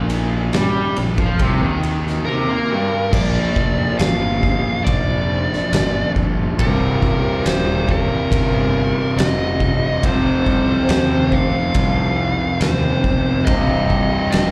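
This excerpt sounds like a live gig heard through the venue's PA, carrying the reverb of a recital hall. It is hypnotic, sludgy stoner and doom metal at 70 BPM in a straight 4/4. The up-front fuzz guitar is double-tracked, picked and distorted with a slapback echo, and its tone is warm as it grinds out the riff. Beneath it, a growly fingered electric bass adds bright, overdriven fuzz. An oversized, low-tuned acoustic kit fills a big, pumping room with a punchy kick, a fat snare and dark crash and ride cymbals, all saturated and gritty. At 2.3 seconds a compressed, dusky fuzz lead guitar enters with a high melody through distortion, slapback echo and digital delay. From 3.1 seconds the harmony moves from Bb through C minor and F5 before settling back on C minor.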